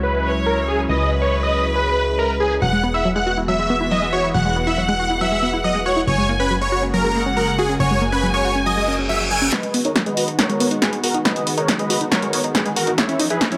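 Emotional and soaring, this uplifting trance excerpt at 139 BPM in G# minor sets a huge, euphoric supersaw lead melody, filter-swept and pumping with delay, over a thick, phased and chorused pad of sustained chords, a round, mellow FM bass and a distant, vibrato-rich studio violin section carrying a second line through dub echo, with a detuned unison pluck adding arpeggios from 2.6 seconds, an electronic reverse cymbal and riser arriving at 8.9 seconds, and at 9.5 seconds a build-up as a tape-warm kick in the background and a punchy analog drum machine's up-front snare and hi-hats enter with a fill, all set in a moderate hall reverb.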